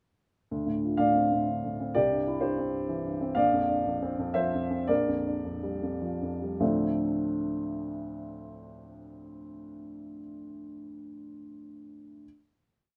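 Melancholic and reflective, this brief neoclassical minimalist piano piece unfolds in 3/4 with a rubato feel, its tempo drifting between 101 and 128 BPM in D minor, tuned to A4 = 443 Hz. A dark upright piano plays alone from 0.5 to 12.3 seconds, its mellow, woody tone sitting up front in a natural sound with light reverb. Rocking broken chords carry a tune in thirds, spanning from Bb1 to F5. The harmony moves from Dm7 through C and Bbadd9 to Gm7/Bb, slowing down from 2.7 seconds before returning to Dm7 at 6.6 seconds. That closing chord then rings out as the piece's final resting point.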